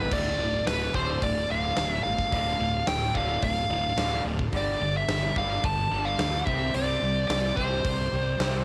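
A dry, tape-worn home cassette recording captures an aggressive, driving hard rock excerpt in 4/4 moving through Dm, Gsus2 and Csus2, where a dark, smooth overdriven lead guitar carries the melody up front over two bright, picked riff guitars in the background, one cranked and phased and the other tight and distorted, while a fuzzy fingered electric bass and a huge arena drum kit with a punchy kick and bright cymbals drive the track and a very quiet, shouting tonewheel organ holds sustained chords through a fast rotary speaker.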